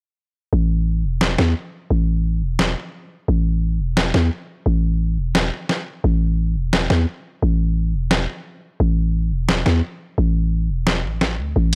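Tense and cinematic, this half-time drum and bass excerpt moves at 174 BPM in 4/4, with a 58% swing on the sixteenths. A growling 808-style bass opens alone at 0.5 seconds, sitting low between E1 and E2, its buzzy sine tone striking with a fast attack before decaying, placed up front in the mix. At 1.2 seconds a boom bap sampler-style drum kit joins, built from hi-hat and a medium-tuned snare that sounds compressed and pitched down, with a tape-warm grit that keeps it equally forward. The two parts run together until the cut at 11.8 seconds, holding a single section throughout. The room is nearly dry, and the hardware recording carries a gritty transformer saturation across the whole short fragment.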